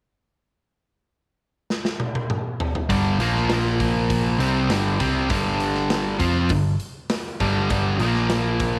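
A straight 4/4 groove at 100 BPM drives this swaggering, brooding classic rock excerpt in G minor, opening with a big-room acoustic drum kit, its punchy kick and medium-tuned snare entering with a fill from 1.7 to 2.9 seconds. At 2.9 seconds two up-front picked guitars hit the riff together over G5 and Bb5 power chords, one crunchy and bright, the other sludgy and dark with overdrive, while a round hollow-body bass adds punch beneath them. Light reverb gives the ensemble a sense of space through to the cut at 8.8 seconds.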